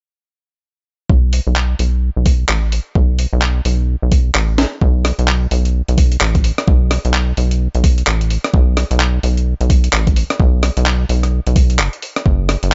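Soulful and skippy, this two-step UK garage cut runs at 129 BPM in 4/4 with a 60% swing on the sixteenths, lifted from a longer piece. A knocking, overdriven electronic kick sits up front from 1.1 seconds, layered and produced, with a touch of studio ambience. Just after, at 1.3 seconds, a breakbeat sampler-style kit joins with handclaps, hi-hat, rim clicks and a high-tuned snare, its sound pitched up, compressed, gritty and tape-tinged. Underneath, a rubbery square-wave bass moves between F#1 and B1, hollow, nasal and mellow with a fast-attack filter pluck, and a filter sweep shapes it through the opening stretch until a drum fill at 4.6 seconds leads into the next section around 4.8 seconds. The mix is dry and close, with the top end rolled off above 7.7 kHz.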